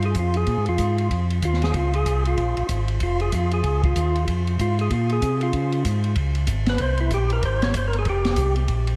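Soul jazz organ trio excerpt, soulful and bluesy with a 4/4 swing feel, where a fat, percussive tonewheel organ carries the melody through a slow rotary speaker, light overdrive and digital delay, over a round, mellow tonewheel organ bass with chorus vibrato and an acoustic jazz kit of boomy kick, high-tuned snare, hi-hat and dark ride, all bathed in a dreamy, lush hall reverb across a minor-seventh progression that closes on bare power chords.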